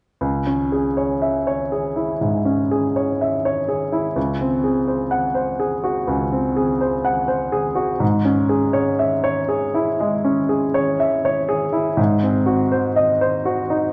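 A clear baby grand piano enters at 0.2 s and carries the melody alone through this short classical fragment, cut from a longer piece. The mood is passionate and tragic, in C# minor at a slow 61 BPM in 4/4, with a rubato feel that lets the time stretch and breathe. Sitting up front with a natural tone and short sustain, the piano ranges from C#2 to F#5 and moves from C#m to G#7/C#, then C#m/G#, and settles on G#7 around 12.0 s. A wet scoring stage reverb, with a 1.9 s decay, surrounds it, and the production is dark and warm, with the instrument tuned to A4 = 438 Hz. The piano plays until 13.9 s, where the fragment breaks off.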